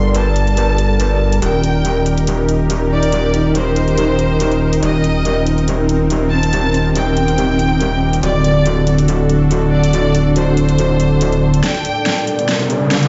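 Heavy wobble dubstep at 141 BPM in G harmonic minor, this menacing, chaotic passage, cut from a longer piece, rides a half-time feel with a light swing on the sixteenths. A metallic, overdriven wobble bass sits up front, low and saturated with a touch of chorus, grinding under a chord cycle of Gmadd9, Eb, Cm7/Eb and D before stopping at 11.6 seconds. Above it, a clear chamber violin section carries the bowed melody with intense vibrato and a digital delay, while a lush, detuned supersaw pad holds sustained chords through a low-pass filter and a blurred granular cloud pad drifts mellow in the background. The electronic, layered drum kit comes in at 0.1 seconds with a huge, overdriven snare and filtered hi-hats. From 11.6 seconds a build-up takes over, with a drum fill, a filter sweep on the supersaw and an electronic riser entering at 11.9 seconds as the harmony returns to Gmadd9. The whole mix sounds like a big sound system in a bare room, with large studio reverb and a dark top end that stops short of the highest frequencies.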